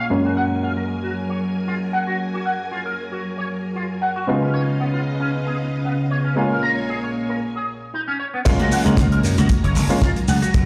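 A glassy, growly slap bass punches in at 8.5 seconds with a tight, dry kick and a damped 70s drum kit with a fat snare, joined a moment later by very quiet, bright congas, lifting this feel-good, groovy nu-disco piece at 115 BPM in F# major after an opening carried by lush, vintage string-machine chords, a worn concert grand piano with pumping tape echo and a clean, picked electric guitar riff through an envelope filter and chorus, in a big, reverberant room sound.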